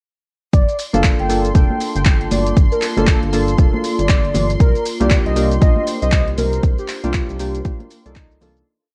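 A four-on-the-floor electronic kick, tape-warm and up front, drives this smooth, moody deep house piece at 118 BPM in G minor, swung on the 16ths, with punchy analog drum-machine claps, hats and shaker and ringing, high-tuned congas tucked in the background. A rubbery, hollow square bass pumps under round analog-key chord stabs with tape echo, while a velvety synth lead repeats a riff over a silky string pad's held high note and a warbling, nostalgic tape-like pad that enters at 1.9 seconds. The groove moves from Gm9 to C7sus4 before fading out from 6.0 seconds, with a cassette-tape sheen throughout.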